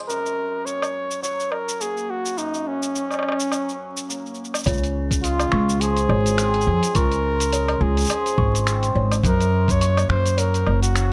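Playful and delicate, this folktronica excerpt in Db major moves at 105 BPM with a light sixteenth-note swing, as bright, shimmering cimbalom arpeggios and a muffled, tape-warm lo-fi kit of cabasa, finger snaps, hi-hat and woodblock support an up-front, close-miked flugelhorn melody with jazz vibrato and digital delay, joined at 4.7 seconds by dark, woody pizzicato upright bass, a thumpy pitched-down electronic kick and a tinkling, delayed music box line in the background, all wrapped in light small-room reverb and vinyl crackle.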